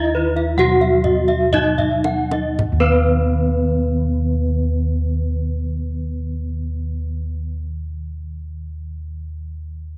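This brief excerpt of Balinese gamelan opens with bronze metallophones and bossed gongs sounding together, setting a hypnotic, brilliant mood. A bright, up-front metallophone carries the melody in the middle register. A very quiet, dark metallophone struck with a wooden mallet plays the accompaniment beneath it. Above them, two metallophones play high arpeggios: one is bright and airy, the other is smooth and more shadowed, one of them carries a slapback echo, and both shimmer with the beating of paired tuning. Close-miked bossed gongs with padded beaters give a round, mellow, full bass line. A deep, dry kendang sits in the background from 0.4 seconds, plays a fill from 1.5 seconds as the opening passage slows, and falls silent at 3.1 seconds as the second section gets under way, all within a moderate spring reverb.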